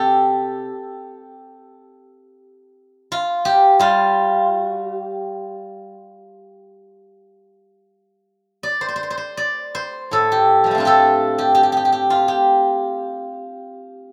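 In a free, rubato pulse, this brief cut from a longer Chinese traditional piece features a solo steel-string zither played with fingerpicks, its silvery, ringing tone sitting up front in a small, lightly reverberant room as an elegant, pastoral opening phrase gives way to a second passage at 8.6 seconds, all captured in a rough home-demo sound.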